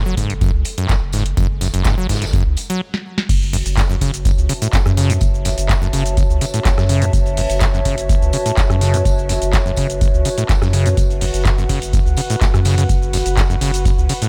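Hypnotic and raw, this acid house passage runs at 125 BPM in a straight 4/4, sitting in F# minor on an F#m chord before shifting to F#m7 at 3.3 seconds. A squelchy, resonant sawtooth acid bass riff drives the track from the start, underpinned by a round sine sub bass and a deep electronic kick, both sitting prominently in the mix. A booming analog drum machine supplies dry, tonal snare, metallic hats, handclaps, rim clicks, shaker, ride and crash, while a vintage acoustic kit with a rolled-off top adds hi-hat, snare and tambourine further back, high-passed and pumping against the kick. A brief stop and drum fill lead into the drop at 3.3 seconds, where a warbling, nostalgic lo-fi pad with ring modulation and its own reverb enters at 3.6 seconds above a moody, detuned analog pad that pumps softly in the background. The overall sound is close and dry, with little room reverb, keeping the squelch and thump of the low end upfront in this fragment of a longer piece.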